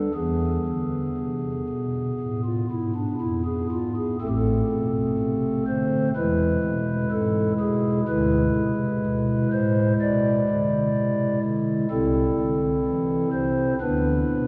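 A pipe organ sounding a stopped flute stop carries this solemn, grave chorale-style classical piece entirely on its own, heard up front from 0.0 to 14.5 s. Its tone is soft and hollow, with the mellow character of flute stops and a romantic voicing that spreads from A1 up to D5. The pulse in 4/4 is uneven and pushed and pulled with rubato, giving the slow progression a searching, prayerful gravity. The harmony moves from E to A minor and back, then through E7 over D, A minor over C, and B minor over D, arriving at that last chord near 13.8 s. A deep cathedral reverb with a long 6.1-second decay surrounds the organ and blurs each chord into the next. The passage is an excerpt cut from a longer piece.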